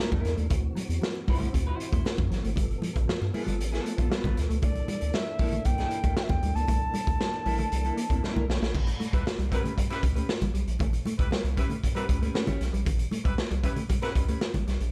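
Dark, lightly reverberant production frames this playful, energetic funk excerpt at 116 BPM, where a gritty, saturated garage drum kit sits up front beside a round, wave-folded analog bass, over a picked clean electric guitar, a fingered mellow electric guitar riff with spring reverb, damped, very quiet congas and a key-clicking tonewheel organ with fast rotary speaker that holds chords until 8.7 seconds, while an airy, chiffy alto recorder carries the melody from 4.6 seconds and a loose, vintage horn section takes a second line from 9.1 seconds.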